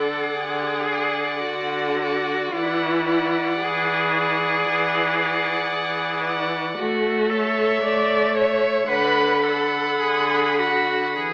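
A tender, lyrical classical string quartet movement opens at once with all four bowed players: a rich, focused first violin sings the melody with vibrato over a smooth, even second violin line, while an expressive viola with portamento carries the accompaniment and a distant-sounding cello, sliding between notes, holds the bass, all at a slow, rubato 49-58 BPM in 4/4, moving from Bm/D through E9 and A back to Bm/D, bathed in a reverberant recital hall and filtered through a thin AM-radio sound in this brief excerpt cut from a longer piece.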